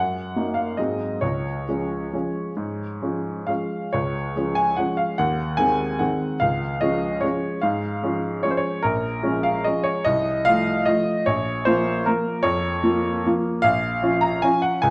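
Nostalgic and bittersweet, this classical piano waltz in 3/4 moves with a flexible rubato feel, cut from a longer piece and lasting about 14.9 seconds. A clear, woody upright piano plays solo, slightly detuned, sitting up front with long sustain as it spans a broad range, first settling from Ab7 onto Db and later turning darker through Bbm7 and F7/C before landing on Bbm. Moderate recital hall reverb surrounds it in a dark, warm production, with a new section beginning at 3.9 seconds.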